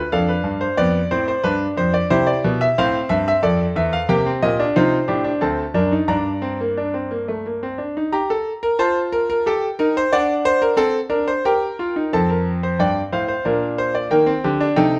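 A clear, smooth grand piano with a vintage character and short sustain sits up front, carrying a solemn, contemplative baroque-style four-part fugue in triple metre. The harmony moves from its opening minor key toward a new minor centre at 4.1 s, with a contrasting middle passage before the opening material returns at 12.1 s. A moderate stone-room reverb surrounds the piano in this brief passage taken from a longer classical piece.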